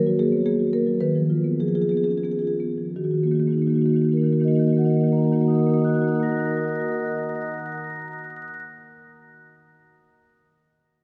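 Flowing and reflective, this brief excerpt from a longer contemporary classical work is written for solo marimba, played with medium mallets from start to finish across 8.7 seconds. The rosewood bars give a woody, full tone, captured close and up front, and the space around them is a wet cathedral reverb with a long 4.2-second decay. Set in a rubato 3/4, the opening phrase slows down through its first 3.0 seconds while the harmony moves from a minor chord to a rootless Db9 over Eb. At 3.0 seconds a new passage begins, settling back onto the minor home chord. The writing ranges from Eb3 up to Bb6, covering the instrument's lower and upper registers.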